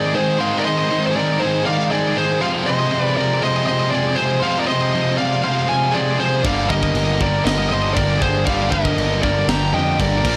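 A straight 4/4 pulse at 119 BPM drives this dark, aggressive heavy metal piece. An up-front, shadow-toned lead guitar carries the melody over a warmer second lead line, both distorted with delay. Beneath them sit three picked high-gain riff guitars, two tucked into the background and one of those double-tracked, and a very quiet chamber organ that holds sustained chords on light, bright flute stops with a touch of chiff. At 6.4 seconds a growly, direct electric bass and a tight acoustic drum kit enter, the high-tuned snare, crash and clipped kick sitting mid-forward with a rolled-off top, while the whole blown-out, overdriven recording moves through Ab, F minor and G minor under light reverb.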